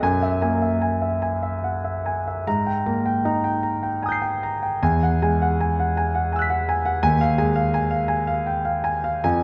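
Moving in 6/8 at roughly 47-58 BPM by the dotted quarter, the rhythm breathes with free rubato, giving this short passage from a longer impressionist classical piece a luminous, serene calm. A solo concert grand piano carries the music from start to finish, sitting up front with a clear, natural tone, a deep bass and long sustain across a range from Eb2 to C7. The harmony drifts through rich, colorful chords: Gb9 at the opening, Abmaj9 at 2.5 seconds, Eadd9 at 4.8 seconds, and finally an Ebsus24 that leaves the phrase suspended. The instrument is tuned slightly low, at A4 = 437 Hz. A moderate concert hall reverb with a 1.9-second decay surrounds the piano, lending the 9.4-second fragment a spacious, glowing air.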